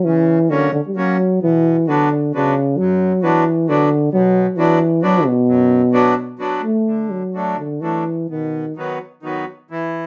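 Bouncy and jolly, this short cut from a longer alpine folk piece sways in three with a loose, rubato feel. A dark euphonium carries the melody up front in a smooth, classical style, touched with light vibrato and sitting in its lower-middle range. Beside it, a reedy, full accordion supplies the accompaniment with the dry tuning typical of the style, spanning from deep bass notes up into the middle register. Around 6.9 seconds the music moves into a new section with a brighter harmonic turn, and after the euphonium finishes at 8.7 seconds the accordion carries on alone. A wet studio reverb and a dark, warm production give the pair a cosy sense of space.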